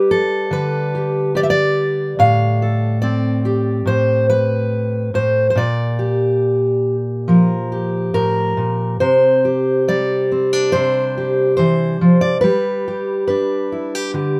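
Bathed in light reverb, a full-bodied, up-front fingerpicked steel-string dreadnought guitar plays alone in this hopeful 14.4-second folk fragment at a rubato 70 BPM in 4/4, ranging from A2 to F5 as it moves through G, Fadd9/A, Bb6 and Csus2 before settling back on G at 12.4 seconds.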